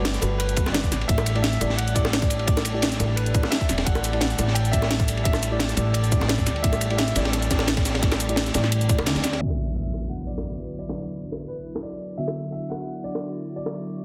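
Uplifting and dreamy, this liquid drum and bass cut moves at 173 BPM in D major, its chords shifting from Gmaj9 to A7sus4 and settling on D69 at 9.4 seconds. An intimate concert grand piano carries the melody with audible action noise and long sustain, sitting over a mellow FM electric piano whose soft, round, warbling tone is dark and chorused, and a lush, detuned unison sawtooth pad that breathes in the background with chorus and sidechain pumping. Below, a woody, thumpy pizzicato upright bass sits up front beside an overdriven electronic kick, while an up-front drum and bass kit brings a cracking snare, bright hats and shaker. A gritty, saturated breakbeat kit with dark cymbals and a high-tuned snare adds texture, and tight, high-tuned bongos played with hard hands tick along in the background. The kick drops out at 9.1 seconds on a band accent, then the upright bass and breakbeat kit stop as an electronic impact lands at 9.4 seconds, and a filter sweep moves over the electric piano and pad to close the excerpt. 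The dense, heavily limited master carries a light studio reverb.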